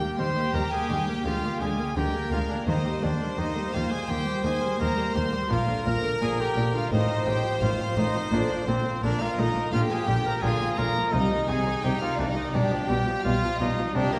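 Over a straight 4/4 pulse, this brilliant, festive baroque-style concerto movement, cut from a longer piece, pairs a warm, smooth-topped solo trumpet with an expressive, vibrato-rich violin section on the melody, while a second, focused violin section traces a supporting line. Beneath them, a muted, lute-like buff-stop harpsichord and a background viola section supply accompaniment, and a lush cello section and double bass section carry the bass from 0.2 s. The players are heard from further back in a reverberant scoring stage, which gives the close upper strings a spacious halo.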